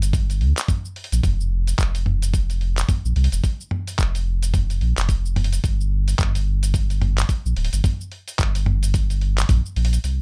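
A swung sixteenth-note groove in 4/4 carries this short cut from a longer organic downtempo piece, and its mood is meditative and mystical. A dusty, sampler-style soul drum kit with handclaps, hi-hat, shaker and toms runs throughout, its compressed hits sounding gritty and sitting lower in the mix. An up-front electronic kick drum, also sampler-style and compressed, adds a thumpy weight from 0.1 seconds to 9.6 seconds. Underneath, a deep sine sub bass with a fast attack holds long, round, mellow notes close to the front. The sound is dry, with the rough, unpolished feel of a home demo.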